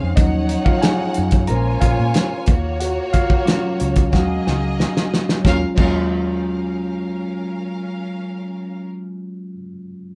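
A worn, slightly out-of-tune tine electric piano leads up front from the opening of this bittersweet, smooth 1970s-style soul excerpt in Eb dorian at 91 BPM, joined by a distant, lush bowed violin section with vibrato, a dark, round foam-muted fingered electric bass, and a cloth-damped, thuddy drum kit with dark cymbals that plays a fill from 4.1 s before stopping at 6.0 s, the band playing together in one room within a moderate studio reverb.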